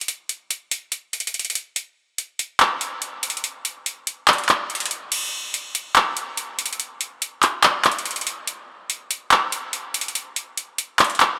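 A booming analog drum machine opens this short hip hop excerpt, its electronic kit set up front with a crash cymbal, handclaps and metallic hi-hats. The tempo is 143 BPM in 4/4, played with a half-time feel that gives the groove a heavy, menacing weight. The machine carries a tape-warm character, and a huge ambient reverb spreads a dark, cavernous space around it. At 5.1 seconds the kick drops away while the claps, hats and crash carry on, thinning the low end until the clip ends at 11.3 seconds.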